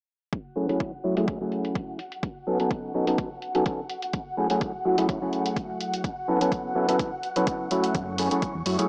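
A lush vintage string machine and an overdriven analog kick and hi-hat open this funky, sensual filtered disco house excerpt at 126 BPM in F# dorian. They are joined at 0.6 s by a mellow, stringy clav that sits up front with phaser and a pumping low-pass filter, and later by a dark, round hollow-body bass that arrives only at 7.9 s. The music moves through F#m7, B9 and A69 under a filter sweep and light reverb with a small-speaker sound.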